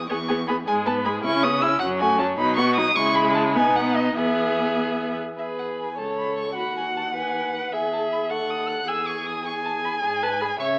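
Heard through a narrow, AM-radio filter with a moderate recital-hall reverb, this fragment of a quick, graceful and lively classical-period movement for string quartet moves in a rubato 6/8 at 104 BPM (dotted quarters) in E major, its opening phrase returning at 5.4 s. The first violin carries the melody high with a soft attack, vibrato and expressive portamento, while the second violin sits up front with a smooth top on its own singing line. A rich, focused viola fills in the accompaniment above a cello bass that is also bowed with vibrato and portamento.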